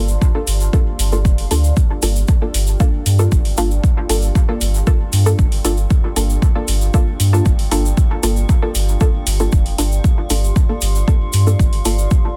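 A straight 4/4 pulse at 116 BPM drives this hazy, nocturnal dub techno excerpt in G minor. Up front, a deep, overdriven electronic kick, re-recorded in a large room, is joined by metallic, overdriven electronic hi-hats and a grainy, bright egg shaker tucked in the background. A round sine sub bass, also prominent, holds the low end with a fast attack and sustained notes under sidechain pumping. Muted sawtooth dub chord stabs with a filter pluck and short decay carry a single Gm7, colored by chorus, phaser, cassette tape, dub echo and sidechain pumping. Behind them sits a dark, moody pad of sawtooth and triangle with a sub octave and slow attack, treated with chorus and phaser, and from 2.8 s an eerie, inharmonic FM drone on F4 hovers with chorus, reverb and a long release, all inside a digital ambience and a dense, heavily limited modern master.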